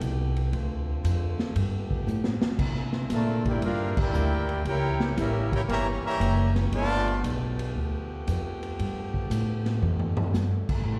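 A dark saxophone section opens this brassy big band swing excerpt with sustained chords, joined from the start by a woody, thumpy pizzicato upright bass on gut strings and a swinging drum kit with dusky cymbals, a medium-tuned snare and a punchy kick. The groove moves at 116 BPM in 4/4 with a swing feel on the eighth notes, and the drums add short fills along with crash, ride, hi-hat and toms. At 3.1 seconds a clear, tight trumpet section takes the melody with a soft attack and a smooth top, while a trombone section with light vibrato and a vintage tone carries a second line further back in the mix, and the whole band hits an accent shortly after. The harmony moves through G9, Dm7, C9 and C#dim7 before returning to G9. The brass drop out at 7.2 seconds, leaving the saxophones, bass and drums. A big concert-hall reverb places the ensemble a little back in the room, though the bass, drums and trumpets sit up front.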